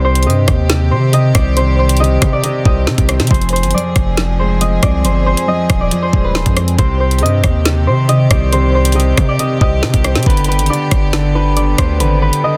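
Cold and dark, this short drill cut moves at 138 BPM in a half-time 4/4 feel, set in C harmonic minor as the chords shift from Cm to Fm, back to Cm and onto G. A bright, thumb-plucked concert harp carries the melody in a narrow upper range, its ringing notes softened by a low-pass filter and trailed by delay. Beneath it, a mellow, deep-bassed grand piano supplies filtered accompaniment, while a distant chamber string section holds earthy, lightly vibrato-touched chords further back in the mix. Up front, a distorted 808-style bass hits with a fast attack and a noisy, aggressive edge, joined from 0.2 seconds by an overdriven drum kit of knocking kick, woody snare, rim clicks and bright hi-hats. The sound is dry and densely limited, with the low end and drums dominating the orchestral layers above.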